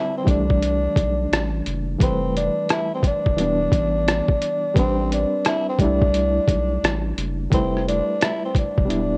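This short lo-fi hip hop excerpt opens with a growling tenor saxophone carrying the melody over a bright, reedy electric piano with fast tremolo and a cassette-tape tint. At 0.3 seconds a saturated sub bass and a lo-fi sampler-style drum kit enter, the kit's thumpy kick, hi-hat and rim click sounding pitched down, muffled and overdriven, placed up front as if re-recorded in a small room. The bass is deep and thick, with a fast attack and sustained notes, while the saxophone stays breathy and raspy, with subtone, vibrato and scooped notes in a jazz style. At a relaxed 87 BPM in 4/4 with a swung sixteenth-note feel, the harmony moves through C69, Fmaj9#11, Em7 and Am11 before returning to C69 and Fmaj9#11. Light reverb and worn, warbling old-tape pitch drift give the whole a reflective, nostalgic haze.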